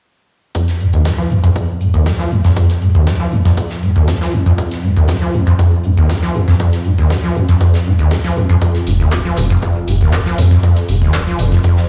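Acid house at 119 BPM in F minor, hypnotic and raw. It is built on a squelchy, resonant sawtooth acid bass riff that sits up front, with a filter sweep running through it, plus lush chorus, cassette tape and digital delay. Around it play an overdriven, punchy electronic kick, an analog drum machine with handclaps and hi-hat, and a big-room acoustic kit whose fat snare and sidechain-pumping hats fill out the beat. A deep, thick sine sub bass with sidechain pumping enters at 8.9 seconds, and the whole excerpt sounds as if played on a big sound system in a bare room.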